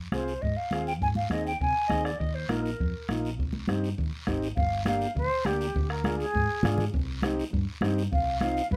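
A mellow, airy silver concert flute leads this passionate, driving cumbia excerpt in C minor at 203 BPM, its vibrato and crisp attack sitting up front, then stepping out for a solo from 4.6 seconds to the end. Beneath it, a reedy vintage combo organ with light vibrato supplies clean accompaniment. A dark, round hollow-body electric bass anchors the low end. The percussion blends a soft-beatered bombo, high-tuned congas struck with soft hands for a damped, thick-skinned tone, and a raspy guiro sitting well back in the mix. Between 1.9 and 3.2 seconds a breathy clarinet adds a brief second line, its subtone carrying a vintage jazz flavour, while the chords move from Fm through Ab and Ebsus2 to Cm, then Gm, Ddim and back to Cm, all within a moderate studio ambience.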